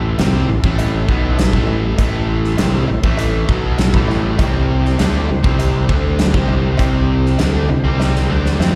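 This short cut from a longer piece sounds like a live gig heard through the venue's PA, with the light reverb of a recital hall around the band. It is gritty, brooding classic rock in A minor at 100 BPM in a straight 4/4, with the harmony moving from Am to C5. Two overdriven guitars carry the riff: a picked semi-hollow guitar with a bright, hollow-body edge, and a crunchier, warmer one sitting in the background. Up front, a growly, direct fingered electric bass holds the low end, while a very quiet tonewheel organ sustains full, thick chords through a slow rotary speaker with vibrato and light overdrive. The big rock drum kit enters at 0.2 seconds with a tight kick, a medium-tuned snare and hi-hat in a stone room, joined by a metallic, vintage cowbell with slapback echo in the background. A drum fill starting at 8.0 seconds closes the passage.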